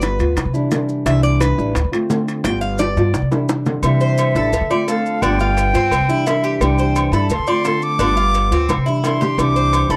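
A straight, easy Cuban son and guajira groove in 4/4 carries this relaxed, sunny cut from a longer piece, where a bright, metallic Cuban tres with double strings takes a featured solo in arpeggios until a reedy, airy concert flute takes the melody at 3.8 seconds, all over a dark, thumb-plucked nylon-string guitar, an up-front woody pizzicato upright bass with gut strings, round low-tuned bongos and cowbell in the background, grainy maracas and ringing metal-shell timbales and agogo bells, with drum fills and light reverb on a dry, close 1970s-style studio sound.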